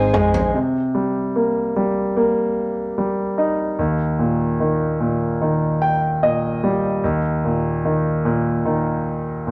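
Pop ballad excerpt in C minor at 74 BPM, longing and melancholic, opening with a brief tom fill, round foam-muted electric bass, a mellow tonewheel organ on slow rotary speaker and a bright fingerpicked nylon-string guitar with finger squeak, which fall away by 0.6 s and leave a clear, polished concert grand piano up front to carry the accompaniment alone, adding a fill at 5.4 s, in a rough rehearsal-room recording with moderate stone room reverb.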